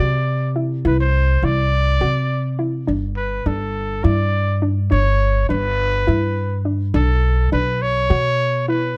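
A breathy, punchy trumpet carries the melody up front, singing with jazz-style vibrato in a driving, intricate progressive instrumental excerpt set in 7/8 at 207 BPM counted in eighths. Beneath it, a woody, thumpy pizzicato upright bass on gut strings anchors the low end, while a soft, round, dark plucked synth with a chorus effect and a sub-octave layer spins short, gentle arpeggios. The harmony moves from Cadd9 to G to Bm in light reverb, and all three parts play together for the full nine seconds.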